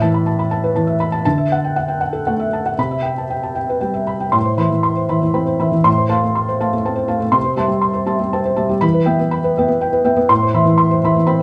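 A moderate studio ambience with a brief decay surrounds this cut from a longer piece of intimate, reflective neoclassical minimalist piano, played live in one room. A solo felt-muted upright piano sits up front, soft and mellow with audible action noise. It moves in a rubato 3/4 at 121 BPM through chords such as Asus2, Dadd9 and Cmaj7, then settles into A minor at 4.4 s, passing through F/A, C6 and Em before returning to Amadd9 at 10.3 s, and the clip closes at 11.4 s.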